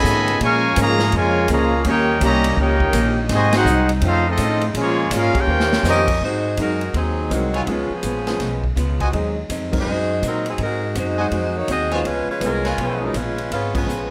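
A clear trumpet section with light vibrato carries the opening melody up front, shadowed by a tight, smooth-topped trombone section on a second line, while a mellow, distant saxophone section holds soft, very quiet chords beneath them until about 6.2 seconds. This is joyful, swinging big band jazz cut from a longer piece, driven by a natural-sounding drum kit with a punchy kick and medium-tuned snare, a woody, thumpy pizzicato upright bass, and a picked archtop guitar sitting in the background throughout. After a short drum fill near 5.5 seconds, a clear saxophone section with vibrato takes over the melody at 5.9 seconds, and an intimate concert grand piano, its action noise audible, joins the accompaniment. A second trumpet section, tight and smooth on top, adds stabs from 7.5 to 13.1 seconds, and the whole band hits accents at 3.5, 9.7 and 13.7 seconds. A moderate large-studio reverb surrounds the ensemble.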